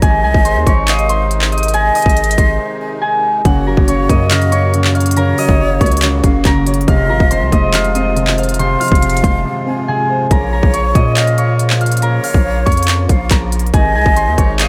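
Heard in a small room with a faint mains hum, this eerie, hard-hitting half-time trap excerpt in Bb minor at 140 BPM sets an up-front, fingerpicked concert harp melody, softened by a low-pass filter and tape echo, against a breathy, vibrato-laden flute second line, reedy musette accordion chords shimmering in the background, a deep, long sine 808 bass, and an electronic trap kit of hard-clipped kick, crisp hats and handclaps, while a dark, mellow baby grand piano joins at 3.4 seconds and drops out at 10.3 seconds.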